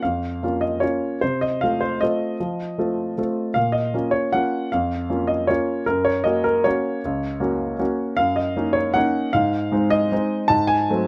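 The recording sounds close and detailed, with little reverb, so the grand piano sits up front with an intimate presence and the noise of its action audible beneath the notes. This is a short classical piano waltz in 3/4, cut from a longer piece, and its mood is elegant and graceful. The piano plays alone for the whole 11.1 seconds, ranging from Db2 up to A5 with a clear, polished tone. The beats fall unevenly, and the rubato gives the waltz a supple, breathing pulse. The harmony moves from Bbm through Gb and Ebm7/Gb before settling on Ab and reaching an Ab7b9 at 10.5 seconds.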